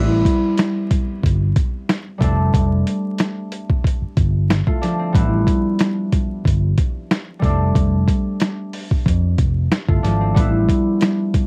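Boom-bap hip-hop at 92 BPM in A minor with a light 16th-note swing, this moody, gritty excerpt sets a ringing, fingerpicked concert harp up front over a dark, round fingered electric bass with transformer-saturated punch and a compressed, pitched-down sampler-style drum kit of thumpy kick, medium-tuned snare and hi-hat, run through cassette tape, that enters at 0.3 seconds, all cycling between Am7 and F6 in a dry, homemade cassette sound dusted with vinyl crackle until the bass drops out at 10.6 seconds.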